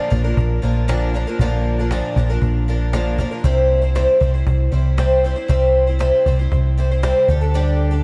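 A straight 4/4 feel drives this jangly, open-road folk rock and heartland rock fragment, where a shimmering, octave-doubled twelve-string acoustic guitar with a boxy, old-string tone sits up front beside a dark, round, punchy hollow-body electric bass, while a very quiet, woody cajon played with soft hands adds faint snares, the harmony moving from Bb to C and reaching Dsus4 at 7.3 seconds inside a light studio reverb.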